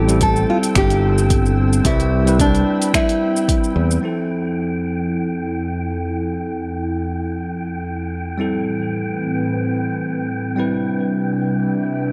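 Swung 16ths at 110 BPM in 4/4 carry this sunny, blissful sunset chillout fragment in F lydian, where a fingerpicked nylon-string guitar plays a brief tape-echoed melody over a bell-like tine electric piano, also tape-echoed and given a filter sweep through the first 4.0 seconds, a breathy, detuned pad with chorus and 12-bit grit, a growly fingered electric bass up front, a faint wind-like tuned noise texture, and an overdriven deep electronic kick joined by a deep house kit of finger snaps, hi-hat, shaker and crash; guitar, bass and drums are gone by 4.2 s, leaving the piano, pad and texture to drift through Fmaj7, Am7 and Cmaj7 in a dark, lush hall.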